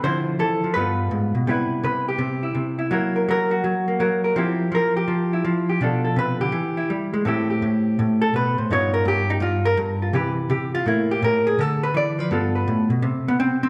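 A dark, clean hollow-body electric jazz guitar sits up front in a wet recital-hall reverb, playing a playful, sophisticated solo jazz piece in C major at 166 BPM with a swung 4/4 feel, its picked, compressed lines moving through jazzy chords like Dm9, F#7 and Gaug7, with its solo running from 1.5 to 13.0 seconds in this fragment cut from a longer piece.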